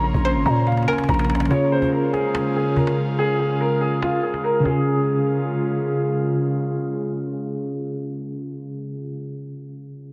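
A dark, mellow baby grand piano melody leads this wistful yet triumphant half-time hip hop and trap excerpt alongside a clean tine electric piano, an airy, breathy pad, a growling, buzzy 808-style bass and a woody cajon with a fill from 0.7 to 1.5 seconds, while a twangy, string-like resonator pluck sits in the background until 1.5 seconds, the dreamy mix soaked in huge reverb as the chords move from Bbmadd9 to Db.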